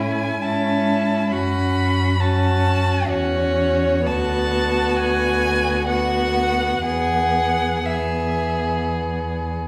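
Lyrical and serene, this slow romantic movement for string quartet unfolds in 3/4 at 59-68 BPM with a flexible, rubato feel, heard as a short section cut from a longer piece. The first violin carries the melody high in its range, its tone rich and expressive with vibrato and portamento, sounding both up front and somehow distant, and it falls silent at 8.9 seconds while the others sustain to the close. Beneath it the second violin holds a focused second line with vibrato, and the viola supplies smooth, even accompaniment with a gentle top and a warm colour. The cello anchors the bass, up front and expressive, with a soft attack, vibrato and sliding portamento. The harmony moves slowly from A through F#m and Bm7/D to E, and a recital hall reverb with a 1.4-second decay gives the ensemble a spacious, glowing wash.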